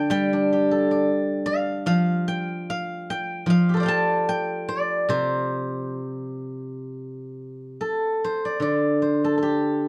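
Flowing and pastoral, this short passage of traditional Chinese solo plucked-string music moves in a free, rubato 4/4 at roughly 66-79 BPM in the C zhi mode. A single steel-string zither, played with fingerpicks, sits up front with a silvery, ringing tone that spans a broad register, opening with a first section before a new section begins at 6.9 seconds. A moderate small-room reverb and a dark production frame the instrument's mellow voice.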